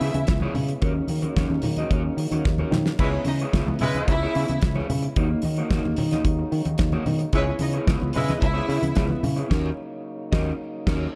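A dark, warm small room frames this sultry, driving disco excerpt at 111 BPM in C# dorian, where a damped 70s drum kit with a fat snare and tight kick sits up front beside a round, fingered electric bass, low-tuned ringing congas and a slightly broken-up electric guitar, all moving between C#m7 and D#m7. A lush, bowed studio violin section carries a smooth second line while a mellow French horn section holds punchy sustained chords in the background. After a drum fill at 2.5 seconds, a distant, roomy horn section adds stabs with slapback echo, and a band accent arrives at 9.5 seconds.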